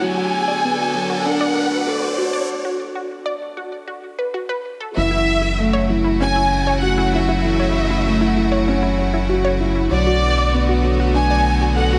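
This cinematic, hypnotic piano and strings electronica excerpt opens with a build-up: a symphonic violin section carries an expressive, vibrato-rich melody with tape echo, over bright, biting bowed chords from a studio string section and a soft, felt-muted upright piano riff with audible action noise. An electronic riser runs from the start until 2.5 seconds, while a lush, detuned unison pluck adds arpeggios with vintage 12-bit sampler grit and tape echo, its sound shaped by a filter sweep. A break follows the riser, and at 5.0 seconds the drop arrives as a round, deep analog bass enters up front. The harmony moves from Bm7 to F#m7 and back to Bm7 in F# minor at a steady 97 BPM in 4/4 with a straight feel. A moderate, lush hall reverb surrounds the mix, giving it a spacious, filmic glow.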